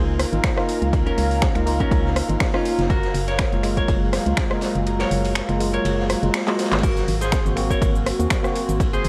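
A clean, picked electric guitar melody with tape echo opens this moody, hypnotic deep house excerpt over a hollow, organ-like FM bass, worn and slightly out-of-tune tine electric piano stabs with overdrive, and two pumping background pads, one deep and dark, the other airy and breathy, moving from Db6 through Gbmaj9 to Ab9, while an overdriven electronic drum kit of claps, snaps, cabasa and rim clicks and a gritty, saturated garage kit with a high-tuned snare join at 0.2 seconds and the punchy, up-front kick drops out from 4.9 to 6.8 seconds around a brief drum fill, all with a light cassette-tape haze.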